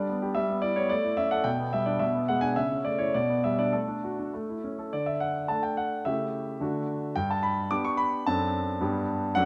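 A clear, smooth grand piano with a vintage character sits up front, playing alone across this short cut from a classical-period sonatina in D major at 108 BPM in 2/4, its rubato feel lending the music a restless yet elegant mood. The part spans F#2 to D6, moving through harmonies such as Em/G, E7/B and A/C# before a new section begins at 4.9 s and turns toward D, A7/C#, G and D7/F#. A moderate recital-hall reverb surrounds the instrument, closing on G at 8.8 s as the fragment ends at 9.5 s.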